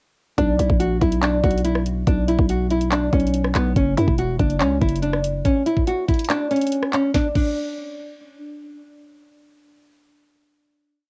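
A half-time trap beat at 142 BPM in 4/4 drives this short, menacing hip hop piece, its trap drum kit sitting up front with a knocking kick, sharp snare, bright hats with fast hi-hat rolls, plus handclaps, rim clicks and a crash cymbal, all carrying a cassette-tape tint. Underneath, a growling, buzzy 808-style bass with a fast attack lays long, decaying sub-bass notes that follow the kick and bend with pitch slides, holding until 5.4 seconds. Over them a woody nylon-string guitar with old strings plays a fingerpicked, looping melody, repeated like a sampled loop and softened by a low-pass filter and cassette-tape treatment. The harmony moves from a rootless Dsus2 to F#5 at 3.8 seconds, and the kick drops out from 6.3 to 7.1 seconds before the hook gives way to a final note. The guitar rings on until 8.4 seconds, in light reverb that gives the hard-hitting track a homemade character.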